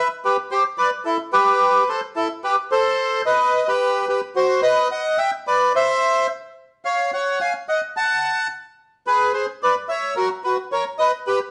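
A reedy, dark, airy bandoneon plays alone and up front through this dramatic, tense tango fragment, moving rubato in 4/4 across a restless chord path that ends on an augmented chord at 11.0 seconds, set in a moderate studio reverb and heard from further back in the room with a dulled top end.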